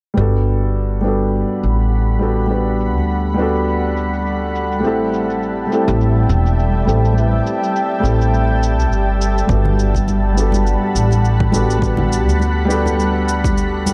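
Smooth and relaxed, this sunset chillout excerpt moves at 103 BPM in G major with a light sixteenth-note swing, as a dark, mellow baby grand piano with tape echo and a woody pizzicato upright bass sit up front over Gmaj9 and Am7 chords. A shimmering, ethereal pad with chorus and a detuned, warbling, granular shimmer enters at 1.3 seconds, while an overdriven, filtered cabasa ticks along and filter sweeps move across the drum, bass and pad. At 9.5 seconds a punchy overdriven electronic kick arrives with very quiet soft-handed congas, all set in a dark, warm production with light small-room reverb.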